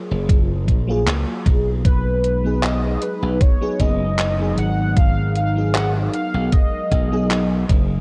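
Opening on a lush, dreamy FM electric piano with a soft pad layer, treated with phaser and ensemble chorus over a faint, warbling tape-like pad on F#maj9, this nostalgic, woozy vaporwave fragment at 77 BPM in 4/4 with a light swing settles onto a punchy, glassy slap bass, a thumpy up-front electronic kick and a detuned 8-bit drum machine of handclaps and hi-hat in gated reverb, before a velvety, full-bodied synth lead with vibrato, chorus and tape echo enters at 1.9 s as the harmony shifts to B6, all carrying a dry, cassette-worn sound.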